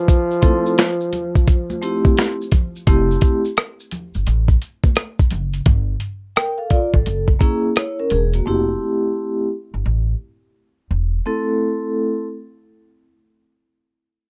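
A swung 86 BPM jazz-hop groove in 4/4 opens on a breathy, whispered trombone stating a brief jazz melody through plate reverb and tape echo, joined a moment later by a gritty, compressed sampler-style drum kit with thumpy kick, rim click, snare and hi-hat and by faint, saturated maracas and congas, before the trombone falls away at 2.1 seconds. Metallic vibraphone chords with slow motor vibrato carry the F major harmony from Fmaj9 through Gsus2 and Gb9, and a woody, dark pizzicato upright bass enters up front at 2.9 seconds. The mood is warm yet cool, set in light reverb, in a passage cut from a longer hip hop piece.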